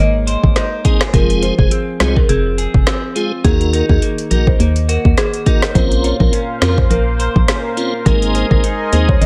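A swung sixteenth-note groove at 104 BPM drives this tough, hypnotic dancehall excerpt in Bb minor, with an afro-pop drum kit landing up front at 0.3 seconds: a deep kick, woody snare, metallic hats and rim clicks, all pushed through overdrive and a gritty vintage 12-bit sampler crunch, with the sound of a small room around them. Beneath it, a hollow, dark FM bass with an organ-like tone and a fast, decaying attack carries the low end. A marimba struck with medium hard mallets plays the melody in a boxy, percussive voice, while a clean, picked electric guitar spins arpeggios through lush chorus, both bathed in diffuse ambient delay. A piping tonewheel organ with key click and chorus vibrato adds accompaniment from 0.8 seconds, and a smooth, detuned sawtooth pad arrives at 5.8 seconds with soft-attack sustained chords that pump against the beat. The chords move from Abadd9 through Fm and Ebm to Bbmadd9 and back, all set in a digital ambience.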